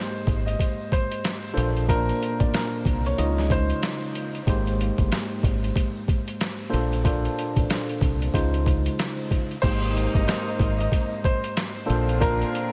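A soulful, confident boom-bap hip-hop excerpt at 93 BPM in Ab major with a 16th-note swing, built on a gritty, compressed, pitched-down sampler drum kit with a thumpy kick and a round, punchy dub bass, while an up-front tine electric piano with cassette-tape colour holds the chords, a woody upright piano carries the melody through a diffuse ambient delay until 4.0 seconds and again from 9.6, a grainy shaker sits far back, and a tight jazz saxophone section with vibrato adds stabs from 9.6 seconds, all in a small, lightly reverberant room.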